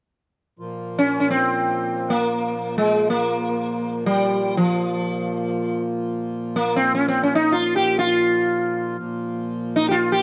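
A mellow, buzzing sitar sits up front with shimmering sympathetic strings and a slapback echo, entering at 1.0 seconds to carry the melody in this introspective, meditative fragment of Indian classical music. Beneath it, a reedy, nasal hand-pumped harmonium holds a quiet, breathing drone from 0.6 seconds. The sound is close and dry, like a 1970s studio recording touched by light reverb.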